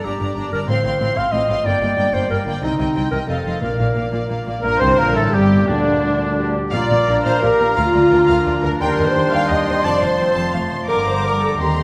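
A mellow French horn section stands out in this urgent, restless passage from a dramatic romantic movement for symphony orchestra in 3/4, holding soft-attacked sustained chords from 4.6 seconds on. Throughout, a bowed violin section carries the melody with lush vibrato while a second violin section, rich violas and cellos, and focused double basses fill out the second line, accompaniment and bass, with a roomy, distant clarinet adding its own line and a concert harp ringing out fingerpicked arpeggios in the background. A very quiet timpani, struck close and dry with hard mallets, sounds a single pitch from 3.6 to 7.2 seconds. When the horns arrive, a clear solo oboe and a pure, straight-toned flute join with further lines, and a bassoon with light vibrato adds accompaniment. The concert hall reverb is wet, and the piece is cut from a longer work.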